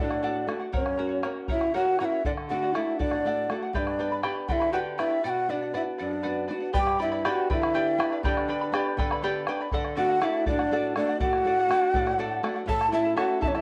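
Andean folk in 6/8 at 80 BPM, wistful yet festive, cut from a longer piece: a close-miked wooden quena carries the melody with breathy chiff, vibrato and plate reverb, while distant cane pan pipes sing a soft second line beneath it. A shimmering fingerpicked charango and a flamenco guitar fill in the accompaniment over a deep, dark bombo that enters at 0.1 seconds, with a break from 5.2 to 6.7 seconds and a nylon-string guitar fill at 11.9 seconds as the chords move through D, G and B minor toward A. The whole recording sits in a wet studio reverb and carries the wobble of worn, warbling cassette tape with drifting pitch.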